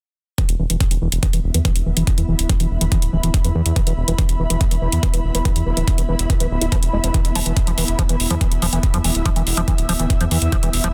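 A dry, dense and heavily limited mix frames this intense, alien psychedelic trance passage, cut from a longer piece, with a knocking, tape-tinged kick sitting up front beside metallic electronic hats and a deep, round analog bass. A squelchy, resonant acid riff runs a filter sweep through phaser, tape echo and sidechain pumping from 0.4 seconds. At 1.4 seconds an ethereal, detuned pad joins, its mellow, chorused haze pumping beneath the groove.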